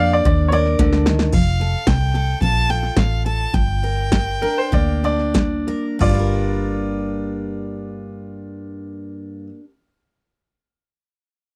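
A clear, nasal fiddle carries the melody in this dusty, brooding honky-tonk and classic country fragment, bowed by a single player with light vibrato until it drops out at 5.4 seconds. Beneath it, a woody upright piano plays a polished second line up front, stepping back briefly before returning, while a picked dreadnought acoustic guitar with audible finger squeak supplies the accompaniment throughout. A foam-muted, round electric bass anchors the low end, and an analog drum machine with a deep kick, punchy snare and metallic hats adds a fill ending at 1.3 seconds, after which the pace gradually slows. A twangy pedal steel sits barely audible in the opening seconds, and the harmony moves from G minor to F and back. The sound is dry and close, in the manner of a 1970s studio session.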